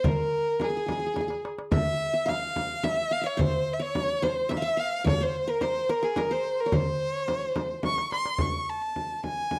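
Arabic maqam ensemble music in C maqam hijaz at 108 BPM in 3/4, stately and passionate, led by an up-front bowed violin with vibrato, portamento and a soft attack touched by slapback echo, over a bright fingerpicked qanun second line that stops at 8.1 seconds, a hard-handed frame drum and a crisp metal-shelled darbuka, with drum fills at 1.2 and 7.8 seconds, captured in a dry, close 1970s-style studio sound with light reverb and cut from a longer piece.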